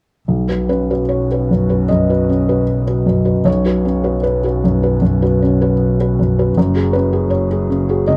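Neoclassical piano and strings in a tender, intimate mood, where an up-front felt-muted upright piano with audible action noise plays soft, mellow accompaniment over a rich, smooth bowed double bass with vibrato, while a dark, detuned analog pad with chorus holds slow-attack chords in the background, all in a dry, dark production moving from Badd9 to F#sus2 at 6.6 seconds in this short excerpt cut from a longer piece.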